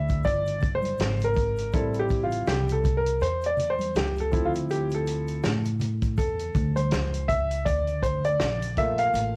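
Relaxed and warm, this short jazz-hop excerpt moves at 81 BPM in 4/4 with a swung 16th-note feel. An up-front upright piano carries a solo throughout, gliding through C69, Am7, Dm9 and Bbmaj7#11 with a smooth, woody, vintage tone, long sustain and cassette-tape colour, while a pizzicato upright bass with steel strings holds the low end. A vintage acoustic drum kit, also given a cassette-tape character, sits up front with a fat snare, a punchy kick and a rolled-off top, as bright tube shaker and soft-handed congas stay in the background of a light-reverb home cassette recording.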